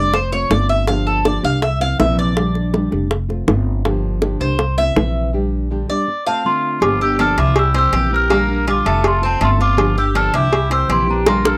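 A metallic, double-strung Cuban tres opens this sunny, dry and close Cuban son and guajira with a picked arpeggio solo over dark fingerpicked nylon-string guitar, growly pizzicato upright bass and tight, high-tuned bongos and cowbell, until at 6.3 s a delicate, bell-like celesta takes the melody with a quieter raspy, growling trumpet as a second line, before a drum fill at 11.3 s.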